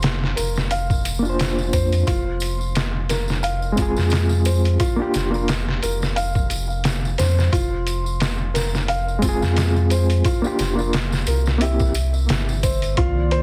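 A round, sine-like sub bass sits up front in this smoky, brooding trip hop excerpt, holding deep sustained notes beneath a slow 88 BPM groove in F dorian with a light 16th-note swing. The sampler-style drum kit is pitched down and gritty, pairing a thumpy kick and medium-tuned snare with hi-hat in a small room, while a compressed, saturated tambourine adds a quieter layer of shaker and handclap texture. A soft, felt-muted upright piano plays intimate arpeggios through a delay, and from 1.2 s to 11.9 s a reedy, overdriven electric piano adds accompaniment through a combo amp, shaded by tremolo, a low-pass filter and tape echo. The harmony moves between Bb/F and Fm before Bb6/F and a closing C7. At 13.0 s a dark, detuned analog pad enters with slow-attack sustained chords, chorus and vintage 12-bit sampler grit. The whole mix carries a heavily compressed, radio-like sound.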